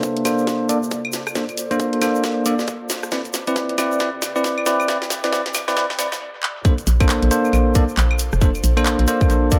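A sunny, soulful two-step UK garage excerpt at 136 BPM in Bb major opens with bell-like tine electric piano stabs and an ethereal, airy pad with chorus, phaser and sidechain pumping, both under a filter sweep through Bbmaj9 and Cmaj9. Beneath them, a tight electronic kick, a garage kit with cracking snare, claves, handclaps, hi-hat and rim click, and a grainy egg shaker drive a swung build-up and drum fill. After a stop at 6.2 seconds the drop lands at 6.7 seconds, and a hollow, bouncy FM bass with tube saturation enters at 6.9 seconds, punching up front beside the kick in an echo-heavy mix of spring reverb and dub echo on the piano.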